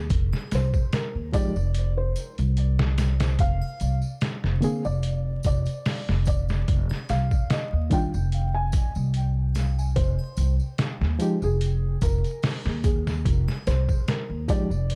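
This recording has a dark, warm production in a small room, with a layer of vinyl crackle. It is a brooding, cinematic trip hop piece at 73 BPM in 4/4, with a gentle 16th-note swing in F dorian. A gritty, compressed, pitched-down sampler-style drum kit sits up front, pairing a thumpy kick with a medium-tuned snare and hi-hat. Beside it, a woody upright bass with steel strings plays pizzicato. Tambourine and triangle tick quietly in the background, while a reedy, worn electric piano enters at 1.3 seconds with tremolo through its built-in speakers, slightly out of tune. Over this, a soft, felt-muted upright piano carries the melody with an intimate, mellow tone, audible action noise and a dub echo, moving through F7(no3), Bb/F and Ebsus2/F before returning to F7(no3) at 10.0 seconds in this cut from a longer piece.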